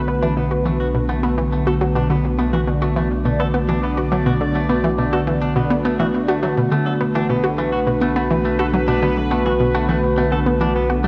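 A bright, full-bodied pad opens the clip, holding sustained Bm7 chords with a slow attack, a sweeping resonant filter and chorus, sitting up front over a deep, round sine sub bass on a low B. This is a hypnotic, mysterious piece of ambient, sequencer-driven space music in B minor, moving at 104 BPM in a straight 4/4 and cut from a longer work. At 0.1 seconds an analog pluck joins with a repeating riff, its detuned sawtooth and square-wave tone carrying a noise layer, a fast attack and short decay, and a chorus-and-delay shimmer. A clean, twangy electric guitar picks compressed arpeggios with delay from 0.2 seconds, gradually fading in across the whole clip and staying the quietest part. A moderate plate reverb adds space, and the sound has a worn, warbling cassette quality, with pitch drift and dulled upper frequencies.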